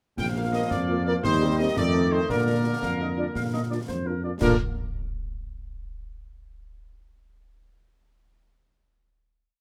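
A spirited, proud military-style march for wind band in 6/8 at 114 BPM in Bb major, this brief complete piece has a clear, distant trumpet section carrying the melody with light vibrato over a smooth woodwind second line that answers at phrase ends. A mellow French horn section enters at 0.4 s with after-beat chords in the background, a brilliant trombone section sustains chords, and an up-front dark tuba plays bass on the beats. Close, dry percussion sets a marching snare over concert bass drum with dark clash cymbals, all in light reverb, before the ensemble settles on a final chord at 4.4 s.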